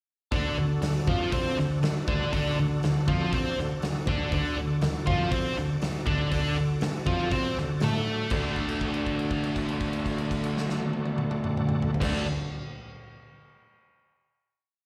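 Blues rock power trio with a southern rock edge, this short, driving, gritty piece runs at 120 BPM in D mixolydian, opening at 0.3 seconds on an overdriven, double-tracked electric guitar octave riff with slapback echo, doubled by a dark, woody bowed double bass playing a boogie figure. A big acoustic rock kit sits up front with a punchy kick and bright cymbals, while a tonewheel organ shouts from the background through a slow rotary speaker and chorus vibrato, holding chords with swells, changing inversions and audible key click. At 8.3 seconds the riff gives way to a final held chord, and the whole piece sounds like a live gig heard through the venue's PA, with recital hall reverb.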